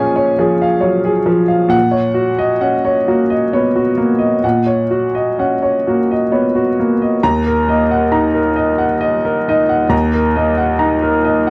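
A dry, close studio sound with light reverb frames this peaceful, intimate excerpt of neoclassical minimalist piano, where a clear, boxy, up-front grand piano plays alone in a rubato 3/4 at 67 BPM, moving through A#m7 and D#m7/A# before settling on D#m at 7.2 seconds across a range from D#2 to A#5.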